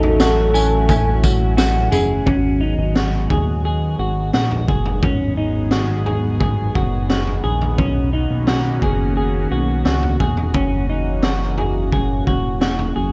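Dark, clean arpeggios from a fingered semi-hollow electric guitar sit up front in this ethereal, hazy dream pop fragment, cut from a longer piece and moving at 87 BPM in 4/4 with a straight feel in G# minor. The guitar is bathed in lush chorus, digital delay and shimmer reverb. A glossy, retro synth bass built from pulse and sawtooth waves, with pulse-width modulation, a filter sweep and saturation, holds the low end alongside a gritty, raw garage drum kit of boomy kick, high-tuned snare, tambourine and toms. Meanwhile a swirling, evolving analog pad carries sustained chords through phaser and chorus. For the opening moments, a round, octave-layered synth lead with vibrato, tremolo and shimmer reverb sings a single note until 1.9 s, while a bright, twangy direct-recorded guitar picks quietly in the background until 2.3 s. The harmony moves from A6 to G#m7, then Bmaj9 and F#7, inside a dark, warm production with light small-room ambience.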